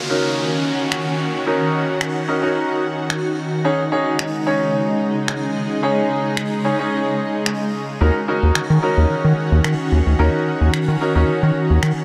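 Electronic finger snaps mark a straight 4/4 pulse at 110 BPM from 0.9 seconds in this confident, driving dance-pop excerpt in Eb minor, their sampler-style sound carrying the ring of a small room. A shimmering ambient pad holds sustained chords throughout, its slow-attack, granular texture evolving with an octave-up shimmer, chorus and a bright, ethereal glow, while a brief electronic downlifter sweeps through the opening 3.6 seconds. A clear concert grand piano plays accompaniment up front, polished and present with short sustain and a lush chorus. At 8.0 seconds a round analog bass arrives, deep and dark with a plucky filtered attack, sitting prominently beneath the harmony. The chords move from Ebm7 to Dbsus2 and back to Ebm7, all bathed in a huge, dreamy reverb with a long 6.2-second tail.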